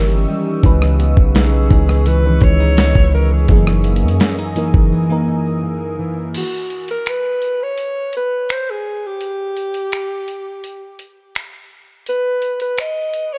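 Contemporary R&B at 84 BPM in a straight 4/4, this late-night, moody passage, cut from a longer piece, opens on a lush, dreamy FM electric piano with a soft pad layer, treated with chorus and phaser, over a glassy, ethereal FM pad sustaining chords high above with ensemble chorus and its own reverb. A thumb-plucked nylon-string guitar adds classical arpeggios with audible finger squeak, while a deep, sine-toned 808-style bass sits up front with long, decaying notes, moving through D#7b9, C#m9 and F#13 harmonies. A gritty, compressed sampler-style drum kit enters at 0.6 seconds with a thumpy kick, medium-tuned snare, hi-hat, rim click, finger snaps and crash cymbal. From 1.4 seconds a breathy alto saxophone carries the jazz-style solo melody, mellow and roomy yet prominent, with vibrato and scooped notes. The bass drops out at 4.9 seconds, and after 6.3 seconds the chords give way, the guitar trailing off by 6.9 seconds, as the sax and drums carry on through a break, all wrapped in a dark, warm digital ambience.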